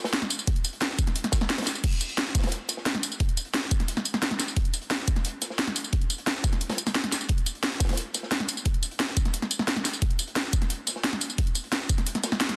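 A dense, heavily limited modern master with light reverb and lossy compression artefacts frames this mechanical, tense drum and bass excerpt at 176 BPM in a straight 4/4. Up front, an overdriven electronic kick drum knocks, layered and re-recorded in a small room. Beside it, a produced drum and bass kit, also overdriven and up front, supplies a cracking snare, bright hats, crash cymbal and tambourine. In the background sits a crunchy acoustic breakbeat kit, dark and smooth yet gritty, saturated and warm, with a medium-tuned snare and a rolled-off top, its hats, snare and room thinned by high-pass filtering. The kick drops out at 12.1 seconds, and a band accent lands at 12.4 seconds just before the clip is cut off.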